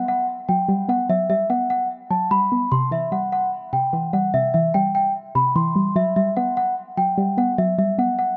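A bell-like, delicate celesta carries the melody through a tape echo and low-pass filter, set over a soft, round, wave-folded pluck with chorus that plays the low accompaniment in this eerie, brooding hip hop fragment at 148 BPM in a half-time feel, moving from Gmaj7/F# to C and on to Gmaj13/F# within a light, small-room reverb.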